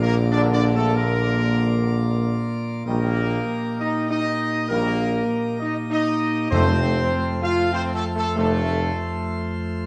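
Triumphant and majestic, this short classical passage in Bb major moves at a stately 92-100 BPM in 3/4 time, cut from a longer piece. A full, brilliant pipe organ plenum sits up front with its mixtures and romantic voicing, sustaining chords that move from Bb to Eb over a Bb bass and then to F. A dark, distant trumpet section carries the melody with a soft attack, while a mellow French horn section with light vibrato and a roomy trombone section in the background hold sustained chords beneath it. A warm solo tuba anchors the bass line, and at 6.5 seconds timpani struck with hard mallets on calf heads add an articulate accent as the harmony arrives on F. The brass and tuba fall away shortly before the organ's final chord closes at 9.9 seconds, all set in a dark production with the reverberant bloom of a scoring stage.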